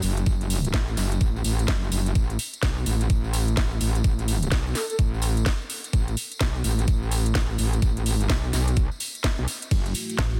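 A swung 16th-note groove at 127 BPM in 4/4 drives this swaggering, bouncy bass house excerpt, with an up-front knocking electronic kick arriving at 0.3 s under a garage kit of cracking snare, metallic hats and ride cymbal set in a small room, while a jingly tambourine sits distant in the background. The metallic wobble bass dominates from the start, an aggressive, distorted FM tone thickened with chorus and tube saturation and pumping against the kick, moving between F#1 and B1 over chords of F#m and Asus2. Around 4.8 s a breathy, flute-like synth lead flickers briefly on a single A4, its vintage warble trailed by tape echo. Near the end the harmony shifts to F#m7 as a deep, moody analog pad enters at 9.9 s with detuned, full-bodied chords, and a mellow, decaying FM bass takes over on A1. The sound is dense and heavily limited, a modern digital master tuned slightly sharp to A4 = 445 Hz.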